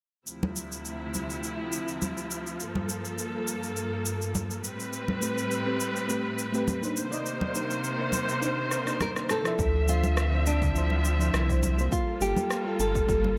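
This wistful sunset chillout excerpt in D minor at 103 BPM opens with a lush, bowed symphonic string section holding smooth, vibrato-rich minor-ninth chords over an electronic shaker and rim click and ringing, close, dry congas, before a soft, dark FM electric piano with chorus, phaser and delay joins at 5.2 seconds, a fingerpicked nylon-string guitar carries the melody from 9.0 seconds with audible finger squeak and digital delay, and after a drum fill a punchy electronic kick arrives at 9.6 seconds alongside a deep, round sine sub bass sitting up front, all in a moderate hall reverb.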